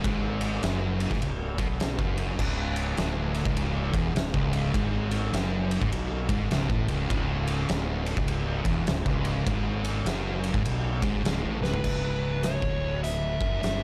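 Two thick, dark fuzz guitars grind out a heavy, hypnotic stoner and doom metal riff on C#5 at a swung 102 BPM, set back in the mix beneath a bright, growly overdriven fingered bass and an up-front, oversized low-tuned drum kit with a punchy kick, fat snare, dark cymbals and a gritty, pumping big-room sound, until a drum fill at 11.5 seconds ushers in a distorted fuzz lead guitar melody at 11.6 seconds as the harmony shifts to C#m at 11.8 seconds, all within a dark, warm production with light reverb and small-room ambience.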